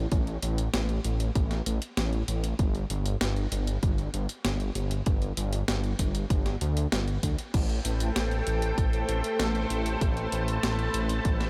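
A steady, straight 4/4 pulse at 97 BPM drives this short synthwave excerpt, cut from a longer piece, with a driving, nostalgic mood. An overdriven, punchy electronic kick and a clean 12-bit drum machine supplying crash, hi-hat and a medium-tuned snare both start at 0.1 seconds, their hits roughened by overdrive and re-recorded in a small room. Underneath, a thick, detuned sawtooth bass with chorus sits up front from the very start, its sustained, mellow tone moving from an open, chordless opening to a G5 power chord at 2.6 seconds. At 7.5 seconds a lush, vintage string machine enters on an Am7 chord, its bright full-ensemble tone thickened by a sub octave, ensemble chorus and slow attack, and pulsing with sidechain pumping. A light digital reverb lends the mix a faint ambience.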